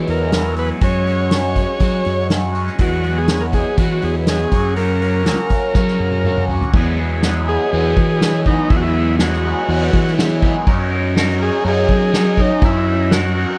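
A straight 4/4 pulse at 122 BPM drives this trippy, hazy slice of psychedelic rock in E lydian, cut from a longer piece and tuned slightly flat of standard pitch. A soft-mallet drum kit sits up front yet sounds distant and roomy, with dark cymbals, a punchy kick and a rolled-off top, and it plays a fill from 5.8 to 6.7 seconds that carries the music into its second section. Beneath it, a fuzz-drenched fingered bass adds a round, overdriven low end, while an electric guitar through a small old amp picks a bright, twangy, slightly broken-up riff coloured by phaser. An overdriven combo organ carries the melody with heavy vibrato and slapback echo, and a second, clean combo organ holds very quiet sustained chords with light vibrato high above. The harmony sways between Eadd9 and F# shapes, ending on F#6, and the whole mix is dry with little reverb.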